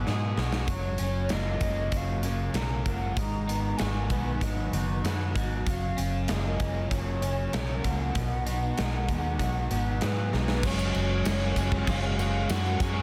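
A straight 4/4 pulse at 96 BPM drives this blissful, hazy shoegaze and dream pop passage in F# major, cut from a longer piece, with a big rock drum kit up front whose punchy kick carries soft clipping and whose fill opens the track at 0.1 seconds. A dark, foam-muted vintage electric bass sits up front beneath a crunchy overdriven guitar riff bathed in lush chorus and a clean, compressed twelve-string electric guitar riff carrying reverse reverb. Very quiet in the mix, a boxy fingerpicked twelve-string acoustic guitar adds shimmering, octave-doubled arpeggios with audible finger squeak. From 0.7 seconds a soft, pure sine lead with vibrato, chorus and analog delay carries the melody over chords moving through F#maj7, G#m7 and B6. At 10.6 seconds the harmony settles on F#sus2 and a jingly tambourine joins in the background, the whole set in a small room ambience with a dense, heavily limited modern master.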